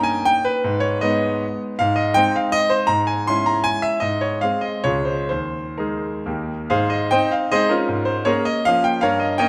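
Dotted triple-time rhythms in 3/4 and a flexible rubato pulse, ranging from 116 to 171 BPM, drive this rustic, graceful romantic classical dance in Ab major, cut from a longer piece, where a solo concert grand piano sits up front with a bright, brilliant, natural tone and deep bass, spanning Db2 to C6 in a moderate recital hall reverb, its harmony passing through Db and a suspended Eb before settling on Ab as a new section begins at 6.7 seconds.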